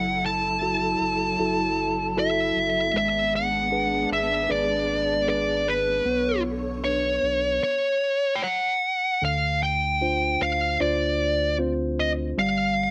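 Longing and emotional, this pop ballad moves at 77 BPM in F# minor, with an up-front, compressed fuzz lead guitar carrying the picked, distorted melody over a worn, slightly out-of-tune tine electric piano touched by slapback echo. A lush, bowed symphonic string section adds expressive vibrato chords until 7.6 s, while a deep, thick saturated sub bass holds the low end through changes from F#m7 and G#dim to Bmadd9, then Dm7 and G7(no3). The sound is dry, recorded outdoors, and this short cut is taken from a longer piece.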